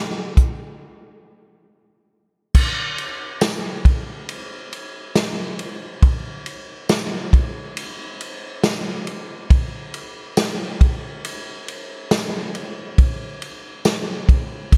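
A vintage acoustic drum kit enters at 0.4 s and sits up front in this haunting, ethereal dream pop piece at 69 BPM in straight 4/4, with a break from 0.8 to 2.5 s, as a punchy kick, medium-tuned snare, hi-hat, tambourine and dark ride and crash cymbals with a rolled-off top sound in a natural studio room touched by light reverb.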